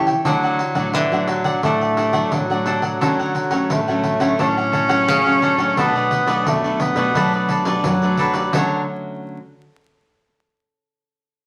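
Wrapped in wet studio reverb and vinyl crackle, this sunny, festive samba and choro excerpt at 87 BPM in D major puts a warm tenor saxophone up front, full of vibrato, subtone and scooped, soft-attack notes, over a crisp, picked cavaquinho, a jingly pandeiro and two fingerpicked nylon-string guitars, one dark and in the background and the other bright and full-bodied with finger squeak, as the harmony moves from D through Dmaj7 to Bm7.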